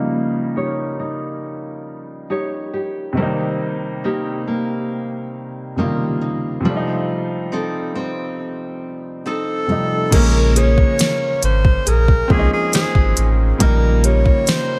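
A low-pass-filtered concert grand piano, intimate with audible action noise, and a fingerpicked classical nylon-string guitar playing filtered arpeggios through tape echo open this slow, longing contemporary R&B excerpt in Bb dorian at 69 BPM; a breathy alto saxophone melody, whispered and close-miked with subtone, vibrato and tape echo, enters at 9.3 seconds, and from 10.1 seconds a deep, full sub bass with octave, built from sine and triangle tones, joins an up-front electronic drum kit with soft kick, fat snare and smooth hats to carry a sensual mood over Bbm9 and then Eb7/Bb in a small, lightly reverberant room.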